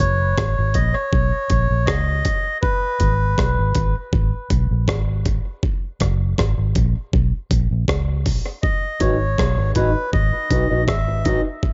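A dry mix with little reverb and a dark top end gives this short dub reggae excerpt a deep, heavy mood at 80 BPM in G# minor. A dark, round, foam-muted electric bass sits up front, punchy and amped, playing low throughout. A gritty, compressed breakbeat kit with a thumpy kick, hi-hat and rim click runs the full length, its pitched-up, tape-warm sampled sound also pushed forward. A reedy, breathy melodica with a nasal, plastic-case character carries the tune through tape echo at the start, drops out at 3.4 seconds, and returns at 8.6 seconds. A clean, mellow electric guitar enters at 9.0 seconds with fingered accompaniment, also fed through tape echo, as the chords move from F# through Bmaj7, G#m and A#m to G#m7.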